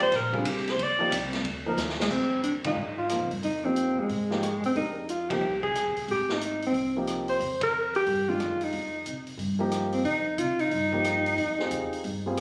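A dark alto saxophone leads this intense, spiritual slice of swinging modal jazz, its subtone, vibrato and scooped notes sitting up front in a plate reverb as it opens with a brief solo. A warm, short-sustained grand piano accompanies it while a woody pizzicato upright bass and a vintage kit with a punchy kick and rolled-off top keep the swing going; a drum fill closes the opening section, and band accents follow at 2.6, 5.3 and 7.6 seconds as the harmony moves from Cm to Cm/F. The sound is that of a phone capturing a moderately reverberant club, compressed and cut from a longer piece.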